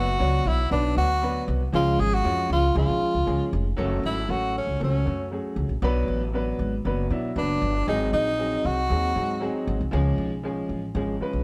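Driving and urgent, this uptempo 1960s-style soul excerpt moves at 117 BPM in F# minor, with the band playing live together in a moderately reverberant stone room. A tenor saxophone carries the melody up front in a jazz-style solo, its tone full of vibrato and scooped notes, and falls silent at 9.7 seconds while the boxy, intimate grand piano, its action noise audible, keeps up the accompaniment. Underneath, a woody, thumpy upright bass on gut strings supplies a dark pizzicato line as the chords move from Bm and C# to F#m and G#7.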